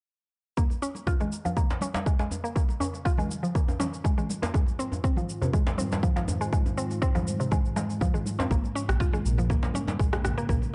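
Earthy and warm, this short afro house cut at 121 BPM in Bb minor sets a punchy, up-front electronic kick and tape-warm cabasa and rim clicks alongside deep, compressed djembe and soft-handed congas, while a woody, round FM mallet pluck runs arpeggios through chorus, phaser, dub echo and a filter sweep over a moody, detuned pad in the background, moving from Bbm7 to Ab6 and back before a rumbling, beating saw bass enters at 8.5 seconds.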